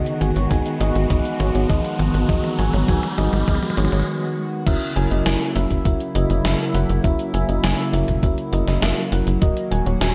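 Synthwave at 101 BPM in a straight 4/4, driving and moody, cut from a longer piece and moving through G#m7, F#7 and D#m under light reverb. A tight, punchy sequencer bass sits up front with a sawtooth-and-square pluck that decays, pumping against the sidechain alongside a thumpy, overdriven electronic kick that arrives at 0.5 seconds. A chorused pulse-width pad holds sustained chords with a shimmering, retro slow-attack glow, also pumping with the sidechain, while an FM electric piano layered with a soft pad adds lush, dreamy stabs colored by chorus, tremolo, a low-pass filter and delay. A gated 80s digital drum machine brings crash, hi-hat, toms and a gated-reverb snare with overdrive, opening on a drum fill as an electronic riser sounds through the first 4.1 seconds. A brief break follows before the second section settles in at 4.7 seconds.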